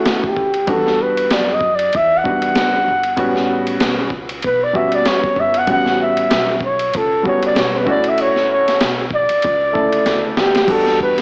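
A breathy flugelhorn carries this nocturnal, cool jazz-hop excerpt, soloing from the start with a soft attack, light vibrato and a whispered, up-front tone colored by analog delay. Beneath it, a dark grand piano plays mellow, worn accompaniment with audible action noise and long sustain, its sound softened by cassette tape. A woody pizzicato upright bass sits low and quiet in the mix, while a gritty, pitched-down boom bap drum kit enters at 0.1 seconds with a thumpy kick, high-tuned snare, hi-hat, ride and crash, also run through cassette tape. The groove moves at 96 BPM in 4/4 with a lazy swing on the sixteenths, and the harmony drifts through Dmaj7, Em9 and A13 before a drum fill at 10.1 seconds leads back to Em9. A lush hall reverb, small room ambience, vinyl crackle and an AM radio filter give the whole piece the hazy feel of a home cassette recording.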